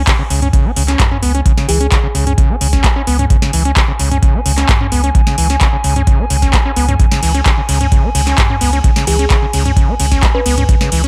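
A straight 4/4 pulse at 130 BPM drives this raw, hypnotic acid house passage in C# minor, taken from a longer piece and anchored by a deep, overdriven electronic kick. A booming analog drum machine adds a crisp snare, metallic hi-hats, handclaps, ride cymbal and toms, with a short room on the snare, clap and hats and an overdriven edge, re-recorded in a small room. Beneath it, a squelchy, resonant sawtooth acid bass riff carries distortion and tube saturation, while a round sine sub bass holds a low C#2 with sidechain pumping. A dark, detuned analog pad sustains chords in the background, its slow attack and long release colored by chorus and the same pumping. A gentle, tine-like FM pluck resembling a thumb piano surfaces briefly at 1.7 seconds and again from 9.1 seconds to 10.7 seconds, warbling through cassette tape coloring, chorus and digital delay, and the mix sits in light reverb.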